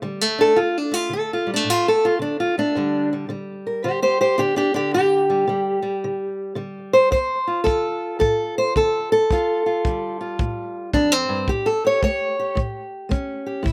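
A swung four-beat lilt drives this brooding, smoky excerpt of acoustic country blues, where a warm, up-front fingerpicked steel-string acoustic guitar carries the melody throughout and a punchy, small-room kick drum with brushes joins at 7.1 seconds, all captured dry in an open-air setting.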